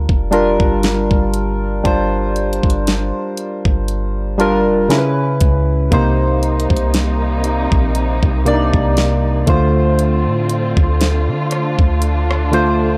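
The recording is dry and gritty, with the close, unadorned sound of hardware gear and very little room around it. This moody, late-night contemporary R&B excerpt moves at a slow, lightly swung pace, cut from a longer piece. Up front, soft electric-piano-like synth keys carry the accompaniment with a round, mellow, slightly detuned tone, shaped by wave-folding, a filter sweep and chorus. Beneath them, a deep 808-style bass gives a dark, sine-like pulse, while a smooth electronic kit sits forward with a knocking kick, fat snare, rim click and warm hi-hats that sound re-recorded in a small room. At 5.9 seconds a muted, con sordino string section joins with veiled, bowed sustained chords and gentle vibrato as the harmony drifts from Gm7 through C#m7 and Cm7 to Dm7.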